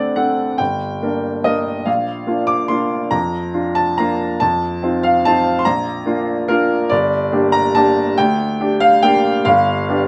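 A clear upright piano plays solo, performing a classical waltz in triple time with a flexible, rubato feel that lets the beat stretch and relax. The mood is sparkling and playful, and the instrument sits up front with a woody, open tone and a long sustain on its notes. Its part spans a broad range, from a low G1 up to D6, and the harmony moves from a D7 through G minor, B-flat and F7 before settling back toward G minor and landing on a G7 at 9.5 seconds. A moderate reverb from a large studio surrounds the piano, giving it space around its clear tone. The 10.1-second passage is cut from a longer piece, and the instrument is tuned slightly above standard pitch, to A4 = 441 Hz.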